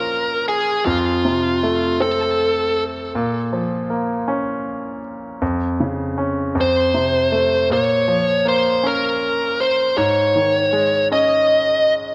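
A dark, overdriven lead guitar with distortion and delay sings a bluesy melody over a clear, deep-bassed concert grand piano from the start of this dramatic, aching pop excerpt in Bb minor, a slow 6/8 at 53 BPM, falling away at 2.8 seconds to leave the polished, short-sustained piano chords alone until the guitar returns up front at 6.6 seconds, all within a light small-room reverb.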